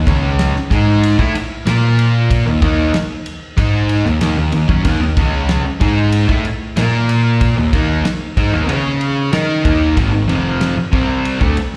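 Classic rock with a confident, sunny mood and a straight, steady four-beat feel, this short clip cuts in partway through a longer piece. Two overdriven electric guitars each play a picked riff: a crunchy one sits up front, while the other sits in the background, and both carry a slapback echo. A fuzzy, overdriven picked electric bass, direct and amped, stands prominently up front beneath them. A damped 70s acoustic drum kit enters at 0.1 seconds, dry and rolled-off, with a tight kick, a fat snare and dark ride cymbal. The harmony moves mainly between Eb5 and Bb5, touching Db5 and landing on Ab5 at 10.0 seconds. It sounds like a live gig heard through the venue's PA, with light reverb and the air of a recital hall.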